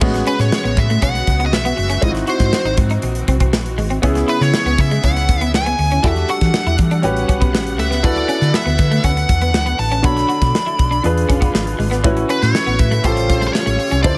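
A straight 4/4 groove at 120 BPM drives this upbeat, glossy 1980s jazz-funk pop excerpt in A major, anchored by a dark, round hollow-body fingered electric bass and a polished, airy studio drum kit with a tight kick, medium-tuned snare, hi-hat and crash cymbal. A clear, intimate grand piano with audible action noise and subtle chorus accompanies through rich chords from Amaj13 to A7alt. A slightly broken-up, picked electric guitar plays a riff bathed in lush chorus, and a bright, intense bowed string section holds sustained chords in the background, while from 0.3 s a nasal, overdriven lead guitar with a parked wah carries the melody through delay, all in a light small-room reverb.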